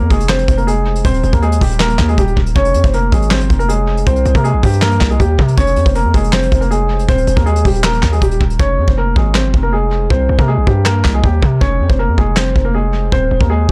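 Trap hip hop in F minor at 159 BPM with a half-time feel, melancholic and eerie, where a dark, mellow baby grand piano carries the melody through a low-pass filter and dub echo, a heavy, aggressive distorted 808-style bass with a noise layer sits up front, and a soft brush kit with a tight kick, handclaps and a rolled-off top plays in a small, echo-heavy room until its hi-hats drop out at 8.6 seconds for the closing stretch of this cut.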